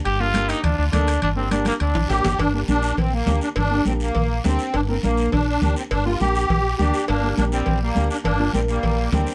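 A growling, gritty trumpet solo with analog delay opens this driving, danceable cumbia in G minor at 205 BPM, over a round, woody fretless bass with ensemble chorus, congas and a raspy guiro, a mellow upright piano, and ringing timbales and cowbell, with a drum fill arriving at 1.5 seconds. At 2.1 seconds a reedy, shimmering musette accordion takes the melody up front alongside the bass. The distant trumpet returns as a second line at 6.8 seconds, with light reverb over the whole piece.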